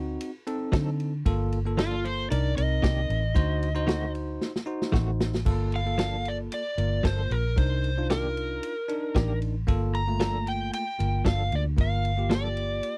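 Straight-eighth soul blues with a smoky, brooding mood, cut from a longer piece, where a dark, overdriven slide guitar enters at 1.8 s to carry the melody up front. Beneath it sit a round, foam-muted fingered electric bass, a warm soul drum kit with dark cymbals and a distant, roomy character, clean, scooped stabs from a compressed, direct-recorded electric guitar, and a bell-like tine electric piano chiming in a bright, clean voice. The sound is dry, the chords move through minor ninth and altered dominant shades, and a drum fill at 4.4 s leads into the second section at 5.5 s.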